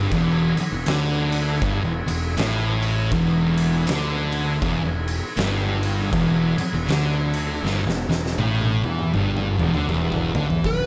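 A moderate studio reverb surrounds this ominous, brooding stoner and doom metal fragment in E minor, moving at 80 BPM in 4/4 with a swung eighth-note feel over a single Em chord. Two thick fuzz guitars carry the riff, one distorted and up front, the other darker and set in the background, while a growly fingered electric bass adds overdriven tube saturation beneath an oversized low-tuned drum kit with a fat snare, punchy kick and dark cymbals in a bright stone room. The drums play a fill from 7.6 s, and at 10.7 s a compressed fuzz lead guitar enters up front on a single high B.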